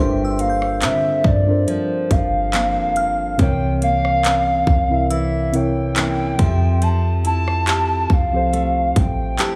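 A trap drum kit with a hard-clipped kick and metallic hats sits up front from 0.4 s, lightly swung at 70 BPM, in this moody, late-night contemporary R&B excerpt in G dorian, where a deep, boomy 808-style bass and muted felt-like synth keys carry the Gm11, C7b9 and Fmaj9 changes beneath fingerpicked nylon-string guitar arpeggios, a hollow, woody clarinet-like synth lead with vibrato, chorus and digital delay sings the melody, and a glassy FM bell with phaser shimmers in the background inside a small room.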